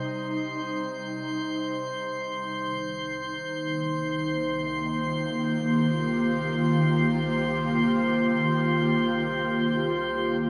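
Spacious and melancholic, this ambient passage in free time is cut from a longer piece and floats on an ethereal, airy pad of sustained chords, its mellow tone shimmering through ensemble chorus and phaser as it moves from Cm to Cm7 at 1.8 seconds. Above it, a drifting glass-harmonics texture adds bright, glassy overtones with chorus, both parts sounding together up front throughout the 10.5 seconds. The whole mix is soaked in a huge, dreamy reverb with a 7.8-second tail.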